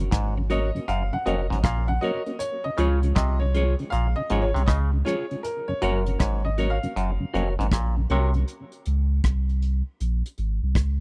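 Uplifting roots reggae with a relaxed swing, cut from a longer piece, where a woody upright piano with audible action noise takes the lead over a riff of nasal, overdriven clav, clean hollow-body guitar with tape echo, and a dark tonewheel organ swirling through chorus vibrato, slow rotary speaker and tape echo, all grounded by a deep, round sub bass and a tight, up-front brush kit of hi-hat, kick and rim click in a dry, close 1970s-style small room, until the other parts drop away between 7.4 and 8.4 seconds and leave only the bass and drums to carry on to 11.0 seconds.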